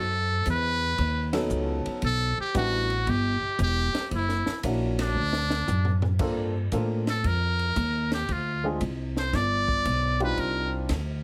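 A buzzy, metal-muted trumpet carries the melody over woody pizzicato upright bass from the start of this smoky, moody swing and bop excerpt at 115 BPM in B minor. A dry cocktail kit with dark cymbals, a high-tuned snare and a punchy kick joins at 0.5 seconds, and a warm baby grand piano adds accompaniment from 1.3 seconds. After a drum fill, the music shifts to G minor at 6.2 seconds, where the thin, lightly vibratoed trumpet takes a solo over chords such as Gm11, Dm7b5 and G7, all set in light reverb with a heavily compressed, radio-like sound.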